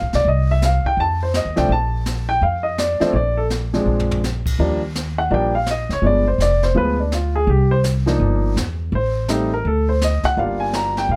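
Warm and sophisticated, this swinging jazz piano trio clip at 166 BPM in 4/4 sets an up-front baby grand piano with a natural, short-sustained tone carrying the melody over woody, thumpy pizzicato upright bass and a softer brushed drum kit with dark cymbals and a boomy kick, all in light reverb, moving from Bb major to Eb major at 4.6 s just after a drum fill at 3.9 s.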